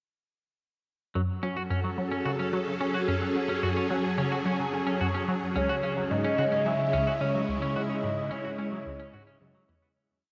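A wet, dreamy mix drowned in a huge 8.7-second reverb, with its highs rolled off, carries this expansive, hypnotic piece of sequencer-driven ambient space music in F# dorian at 109 BPM, moving from F#m to C#m. A swirling, phased string machine holds slowly shifting chords up front while a clean, hollow-bodied electric guitar repeats a 5-step arpeggio loop and a squelchy, resonant blip pluck cycles a 7-step riff, both drifting against the bar beneath a barely audible bubbling filter texture from 4.1 s. At 5.6 s a round, mellow octave-layered synth lead with vibrato enters with arching motif phrases before the whole piece fades out from 7.0 s.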